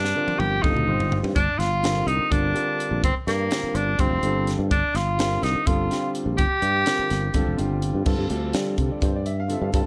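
Electric jazz fusion in 7/8, this intense, funky passage is cut from a longer piece and opens with a drum fill that runs to 1.4 seconds. The crisp kit of crash cymbal, hi-hat, kick, snare and toms sits up front in an airy studio room, with dark cymbals, a high-tuned snare and a tight kick. A clear tenor saxophone carries the melody in a vintage pop style, its scooped notes given a slapback echo, before it stops at 7.5 seconds. Beneath it, a growly, punchy fretless electric bass sustains its notes, while a grand piano with long sustain and audible action noise supplies intimate, boxy accompaniment. The harmony moves through suspended and minor-eleventh colours before settling on G9sus4 at 8.1 seconds, and the dry mix carries lossy compression artefacts.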